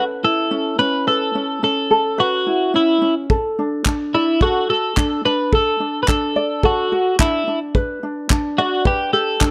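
A bright, clean twelve-string electric guitar carries the melody over a mellow, thumb-plucked ukulele from the start of this carefree, heartfelt acoustic pop fragment in D major at 108 BPM, moving from Aadd9/C# to D and G, with a cloth-damped, thuddy drum kit of tight kick and handclaps joining at 3.3 seconds, all set up front with light reverb and the drums captured in a small room.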